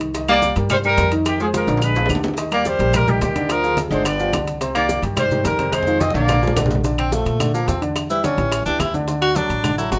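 Set in a moderate club reverb, this sunny, danceable Afro-Cuban jazz excerpt moves at a brisk 215 BPM in straight 4/4, with an intimate baby grand piano showing audible action noise and a woody, thumpy pizzicato upright bass laying down the harmony under a background bed of low-tuned congas, ringing metal-shell timbales, tight, very quiet high-tuned bongos, grainy maracas and woody claves. Up front, a distant, roomy trumpet with light vibrato carries the melody from 0.3 to 6.7 seconds, while a bright, present tenor saxophone with scooped notes plays a second line beneath it. At 6.8 seconds the harmony shifts and the saxophone takes over as soloist, following drum fills that punctuate the opening passage.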